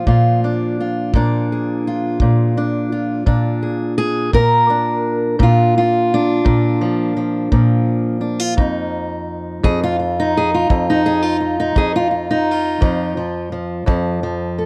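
A boxy, fresh-stringed parlour acoustic guitar, fingerpicked up front, opens this soulful, laid-back country blues fragment in a straight 12/8 with a Bb7 chord, joined at 0.1 seconds by a tight, natural kick drum with brushes, before the harmony shifts to an F7 with its third omitted at 8.6 seconds, all captured in a dry, close 1970s-style studio sound with light reverb.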